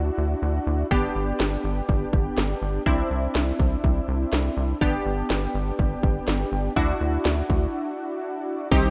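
Upbeat yet wistful, this synth-pop excerpt opens with a funky, detuned polysynth comp bathed in chorus and shimmer reverb, riding over a rubbery, nasal square-wave bass, with a punchy house drum kit of cracking snare, hi-hat and crash joining at 0.9 s. The chords cycle through Dadd9, G and Cadd9 before a brief break at 7.7 s. A shimmering, retro pulse-width pad slips in softly at 8.7 s, all within a dark production and light reverb.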